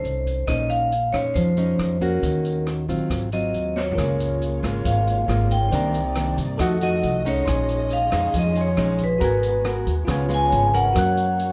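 Lightly reverberant and marked by lossy compression artefacts, this brief cut from a longer bossa nova piece moves at 138 BPM in a straight 4/4, intimate and wistful in mood. A dry, close-miked vibraphone played with medium hard mallets, motor off, carries a ringing, metallic melody over an up-front, fingerpicked classical nylon-string guitar and a woody, thumpy pizzicato upright bass. An open jazz drum kit sits further back in a natural studio room, with a high-tuned snare, boomy kick, hi-hat, rim click and toms. A drum fill at 3.8 seconds leads from the opening in Bb minor into a Db major passage at 4.0 seconds. Just before it, a barky, bell-like tine electric piano joins at 3.9 seconds, and with the new passage a lush bowed symphonic string section adds soft-attack sustained chords with vibrato in the background. The harmony moves through extended chords such as Bbm11, Cm9 and F7b9 before arriving on Gb near the end.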